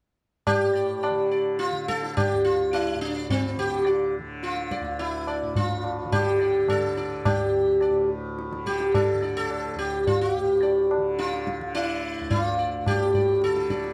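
A dry, close studio sound in a 1970s style frames this meditative, introspective Hindustani classical excerpt in raga Bhimpalasi on D, moving at 106 BPM in 3/4 with a straight feel. Up front, a bright, round sitar carries the melody between C4 and D5, its plectrum-plucked notes shimmering over sympathetic strings, while a warm, softly plucked tanpura sustains a buzzing drone low beneath it. A low-tuned, ringing tabla with a small-room character provides the percussion, and all three play together from 0.5 to 13.9 seconds.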